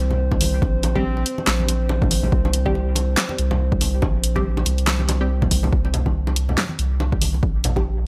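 Deep dubstep with a heavy, dark mood, this excerpt rides a half-time groove with swung sixteenths and opens on a drop that lasts until 5.7 seconds. A deep, round sub bass with a fast attack sits up front in the low end, beneath a moody, nasal analog pad whose slow-attack chords shimmer with chorus. A punchy, layered electronic kick and a deep house kit with a fat snare, handclaps and hi-hat both carry studio reverb, and the kit sits up front, while bright, saturated congas played with soft hands trail off in dub echo. At 1.0 seconds a muted, detuned chord stab with a filter pluck enters through phaser and dub echo, and a woody, bowed cello note with vibrato flickers briefly in the background. From 5.7 seconds a filter sweep on the stab carries the closing section, and the mix sits in a digital ambience.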